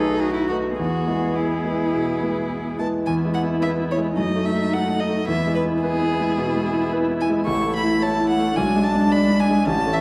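A focused, vibrato-laden violin carries the melody up front in this cheerful, lively excerpt from a quick classical-period movement for piano quartet in E major at 109 BPM. A rich cello bows a second line beneath it, while a clear concert grand piano with deep bass and a natural tone sits forward in the accompaniment, and a soft-attacked, expressive viola with portamento fills in from the background. The harmony moves from B7 to E and later to A, a new section arrives at 3.1 seconds, and the dark production places the quartet in a wet recital hall reverb.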